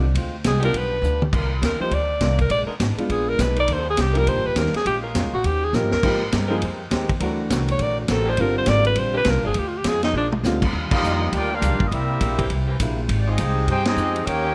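A breathy alto saxophone leads this joyful, energetic big band swing piece at 204 BPM, soloing up front in C minor with vibrato, subtone and scooped notes, while a woody pizzicato upright bass, a vintage drum kit with a punchy kick and high-tuned snare, and a clear baby grand piano with long sustain drive the rhythm. A boxy picked acoustic guitar with finger squeak and a bright, smooth-topped saxophone section holding sustained chords sit in the background, with drum fills and light reverb around the band. At 10.7 s the music moves to Eb major, and a tight trumpet section takes the melody from 10.9 s over a vintage-toned trombone section's second line, punctuated by band accents, in this excerpt cut from a longer piece.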